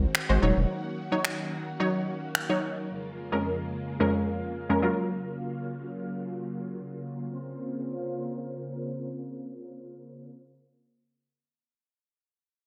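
A lush, punchy unison pluck with a detuned sawtooth edge accompanies this driving, energetic dance-pop excerpt until 5.1 s, over mellow, organ-like ensemble-chorused string chords that sustain to 10.3 s, a thick, saturated sub bass that sounds only in the first 0.7 s, and layered electronic finger snaps in gated reverb, the mix sitting in a moderate plate reverb with bright 1980s-style digital production and a filter sweep through the opening section.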